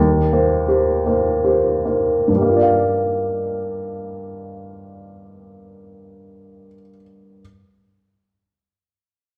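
In triple metre with free rubato, this brief classical passage, cut from a longer piece, slows down over its first 2.3 seconds. The mood is longing and melancholic. A baby grand piano plays the accompaniment throughout, spanning Eb2 to F5; its tone is warm and natural, with short sustain, and it sits up front. The harmony moves from Cm7/Eb to Gm7 as a new section begins, carrying on until the close at 7.4 seconds. A wet, large studio reverb surrounds the instrument, giving the sense of a live performance in one room.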